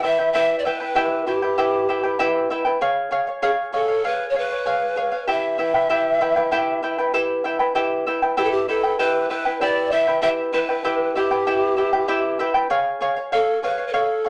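A straight 4/4 pulse at 97 BPM carries this wistful, earthy Andean folk excerpt in E dorian, where a breathy, mellow bamboo pan flute sings the melody with vibrato, soft attacks and a touch of chiff. Up front, a bright fingerpicked charango shimmers with its doubled strings, some octave-doubled, accompanying the flute for the full 14.3 seconds. The harmony moves between Em and C#, and a wet studio reverb wraps the pair in a short, intimate room.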